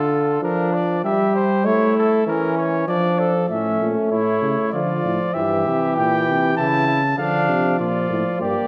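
Lively and stately, this classical brass canzona in triple metre, cut from a longer piece, sets an up-front, mellow lead trumpet with a smooth top over a second trumpet that carries a soft-attacked inner line with light vibrato. A punchy euphonium supplies the accompaniment, and a distant, roomy bass trombone joins on the bass line at 3.5 s as the music moves into its second section. The ensemble sits in a reverberant recital hall, with a faint mains hum beneath.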